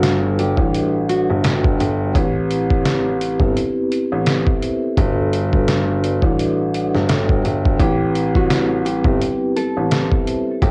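Mellow, metallic vibraphone with slow motor vibrato and a boxy cassette grit carries this moody, gritty boom-bap hip-hop fragment at 85 BPM in A dorian with a swung feel, over compressed, pitched-down sampler-style drums with a thumpy kick, an intimate baby grand piano holding the low bass line with audible action noise, and a full-bodied fingerpicked nylon-string guitar melody heard only from 0.0 to 1.6 seconds and again from 7.8 seconds, softened by tape echo in a dry, home-cassette sound.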